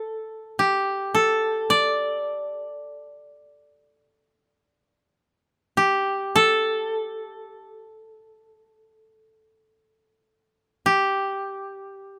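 Close, detailed microphones and light reverb frame this austere, calm fragment of Japanese traditional chamber music at a slow, rubato 53 BPM in 4/4, where a solo koto played with fingerpicks sounds bright, dry and woody up front, moving between G4 and D5 through an opening passage and a contrasting second one that begins at 6.4 seconds and runs to 12.2 seconds.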